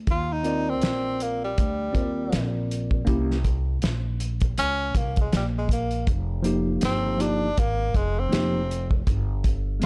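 A dry, gritty hardware recording with small room ambience frames this short cut from a longer jazz-hop track, smooth and cool at 80 BPM in 4/4 with a swung sixteenth-note feel in E-flat major. A breathy tenor saxophone takes the solo from 0.1 seconds, clear and up front, with subtone, soft attacks, vibrato and scooped notes in a jazz style. Beneath it, a pizzicato upright bass on steel strings sounds woody, growly and thumpy, thickened by transformer saturation. A cloth-damped acoustic drum kit gives a thuddy, fat snare, a tight kick and hi-hat, with a rolled-off top. A mellow tine electric piano enters at 0.4 seconds, worn and slightly out of tune yet clean and direct, supplying chords over Ebmaj7, a C7 omitting its third and F9sus4 before the harmony falls away at 9.1 seconds.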